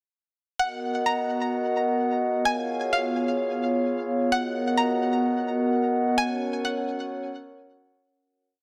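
A half-time hip hop pulse at 129 BPM in 4/4 carries this brief, dreamy and blissful piece in B lydian. A glass harmonica holds sustained chords from 0.6 seconds, its pure, ethereal tone arriving with a slow attack and a beating quality, vintage and band-limited as it sits up front as a pad. Above it, a string-like resonator pluck plays a sparse looping melody repeated like a sampled loop. The pluck is twangy and bright, with a fast, decaying attack, a sawtooth edge, a noise layer, a filter sweep, and chorus and delay, and it stops at 7.1 seconds. The harmony moves from Bmaj7 to C#7, back to Bmaj7 and onto F#, as a fade-out begins at 6.2 seconds, all within a lush hall reverb and a dark, warm production.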